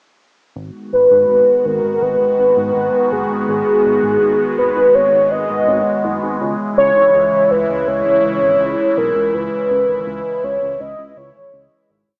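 Moody and driving, this short synthwave piece moves at 82 BPM in a straight 4/4 in G# minor, tuned slightly sharp to A4 = 441 Hz. A chorused synth bass opens at 0.6 s with a sequenced sixteenth-note line built from pulse and sawtooth waves, its glossy, mellow tone shifting under pulse-width modulation and a moving notch. A swirling, detuned sawtooth pad holds sustained chords beneath, with a slow attack and long release, colored by phaser, chorus and cassette tape. Up front, a velvety lead of detuned unison sawtooth and triangle carries a hook-driven motif with vibrato, chorus, tape echo and cassette tape. The harmony sits on G#m7 before moving to C#m at 6.4 s, and the whole piece fades out from 8.4 s, heard through a small room and a small-speaker, home-cassette sound.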